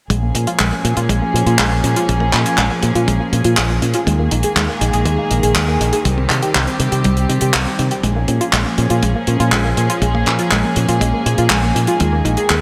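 From the first moment, a bittersweet, melodramatic italo disco excerpt at 121 BPM in Bb dorian sets rich, floating bowed strings holding distant sustained chords over Bbm7, Ebsus4 and Cm against a round, detuned analog pluck whose chorused, tape-tinged arpeggios carry a filter sweep and digital delay, while an up-front fingered electric bass, bright and saturated through its envelope filter, drives alongside a dry, damped 70s drum kit with handclaps and hi-hat and a tight, very quiet kick, the whole cut set in a moderate, lush hall reverb and bright 1980s-style digital production.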